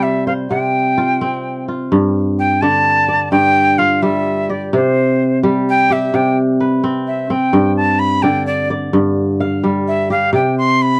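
An airy metal jazz flute, with vibrato, a crisp attack and a touch of chiff, carries an expressive melody and takes a solo from 1.9 s in this hypnotic, joyful West African traditional piece in 12/8 at 86 BPM. Beneath it, a fingerpicked kora rings out crisp arpeggios throughout, while the harmony sways between C and G in G mixolydian. The close, dry 1970s-style studio sound adds moderate small-room reverb to this excerpt from a longer piece.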